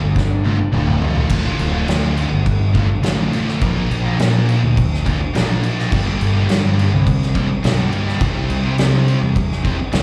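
A sludgy, overdriven guitar riff, double-tracked and up front, drives this dark, cathartic quiet-loud alternative rock excerpt in D minor at 104 BPM, moving through Dm, Bb, Gm and C. A growly, fuzz-soaked fingered electric bass sits just as far forward, while a loose indie drum kit with a fat snare, punchy kick and dark cymbals opens with a fill from 0.2 to 1.3 seconds. The sound is that of a live gig heard through the venue's PA, carrying a club reverb.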